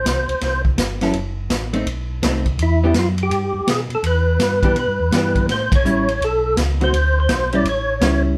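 Soul jazz organ trio swinging with a soulful feel, where a fat, lightly overdriven percussive tonewheel organ carries the melody through slow rotary speaker and chorus vibrato, a round, dark tonewheel organ plays the bass beneath it, a punchy vintage drum kit with a rolled-off top keeps time on hi-hat, kick, ride and snare, a clean, compressed hollow-body jazz guitar accompanies from 1.0 s, and the band hits a shared accent at 5.7 s in a live room with moderate reverb.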